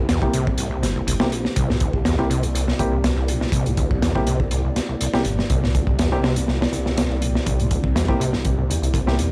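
Dry, gritty cassette-tape sound in a small room carries this funky 122 BPM breakbeat excerpt over a C7 chord, where an up-front, saturated acoustic drum kit with tight kick and rolled-off top drives a squelchy, resonant acid bass riff with tape echo and a filter sweep, a swirling, thick detuned saw bass run through phaser and tube saturation, warm, natural baby grand piano stabs filtered and sweeping under tape echo, and a deep, moody analog pad sustaining slow-attack chords in the background with 12-bit sampler grit and sidechain pumping.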